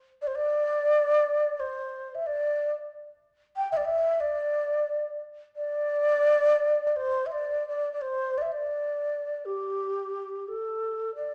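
Chinese traditional music with a pastoral, festive mood: a solo bamboo xiao, breathy and mellow, sits up front from 0.2 to 11.3 seconds in a wet recital hall reverb, its vibrato, soft attacks and unsteady tone giving the short passage a gentle, human intimacy.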